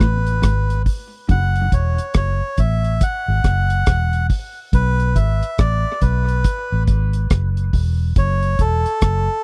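Dub reggae at 70 BPM in B dorian, heavy and hypnotic, with a swung 16th feel: a dark, round, foam-muted bass and a deep, dry drum kit of hi-hat, tight kick and rim click sit up front under a reedy, nasal melodica melody carrying dub echo, while a slightly broken-up guitar riff with spring reverb and dub echo appears in the background only until 1.5 seconds, all captured as a close, dry 1970s-style studio sound in this excerpt cut from a longer piece.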